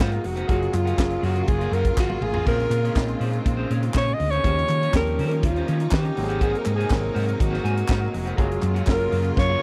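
Disco at 122 BPM in a straight 4/4, this short, danceable excerpt from a longer piece has a glamorous feel and a dry, close 1970s-style studio sound. A breathy, mellow alto saxophone plays a jazz-style solo up front throughout, its subtone and vibrato colored by tape echo. Beneath it, a tight funk drum kit with a high-tuned snare and tight kick drives the groove, with fills at 2.0 and 9.4 seconds, while a round, dark hollow-body electric bass sits just as prominently. A lush, bowed string section holds sustained chords with focused vibrato, and a grand piano with deep lows and a slightly broken-up picked electric guitar stay in the background. A group handclap with a hollow, human character joins at 0.7 seconds as the harmony moves through rich chords such as Gbmaj9, Bbm9, Eb13 and Ab9.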